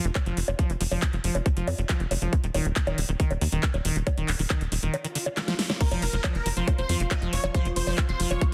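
A squelchy, resonant liquid acid bass riff runs through this hypnotic, alien psychedelic trance excerpt at 138 BPM in 4/4, its bright tone treated with chorus, cassette tape colour, sidechain pumping and dub echo. Beneath it, a tight, punchy sequencer bass with a filter pluck drives low and up front, while a big-room dance kit of huge snare, metallic hi-hats, handclaps, bongos and crash cymbal sits alongside a tight electronic kick that enters at 0.2 seconds. A background swell and a drum fill arrive just after 5 seconds, leading into a thick, detuned supersaw melody at 5.8 seconds as the harmony settles on Fsus4, its compressed sound coloured by phaser, pumping and dub echo. From 6.6 seconds, an overtone-sweeping drone adds sustained chords in the background, with chorus, built-in reverb and vintage 12-bit sampler grit. The mix is dense and heavily limited, with light reverb overall.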